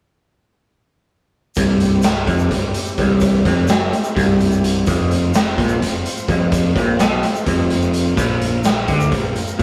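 Kaleidoscopic and trippy, this psychedelic rock passage, cut from a longer piece, rolls along in a straight 7/8 with the rough, unpolished sound of a rehearsal room and a moderate stone-room reverb. From 1.6 s the full band plays together: a clean, twangy electric guitar sits up front picking a low riff through a rotary speaker, while a fuzzy, overdriven bass with a round tone stays in the background. The raw garage drum kit sits up front, its hi-hat, punchy kick and medium-tuned snare carrying a dark, rolled-off top. Far in the background, a very quiet tonewheel organ holds thick, gritty sustained chords, colored by vibrato and a slow rotary effect, and a grainy, band-limited tube shaker adds vintage texture at the back. The harmony moves from C to F5 around 4.9 s and then to Bb5 near 8.2 s.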